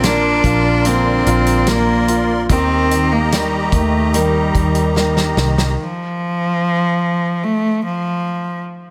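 Lightly reverberant, this melancholic, longing pop ballad excerpt at 73 BPM features an up-front, rich and nasal bowed cello melody with light vibrato over clear grand piano, shimmering reedy musette accordion chords, picked steel-string acoustic guitar arpeggios in the background, a round, dark foam-muted electric bass and a natural small-room country drum kit whose fill at 5.0 seconds gives way to the cello alone from 5.8 seconds.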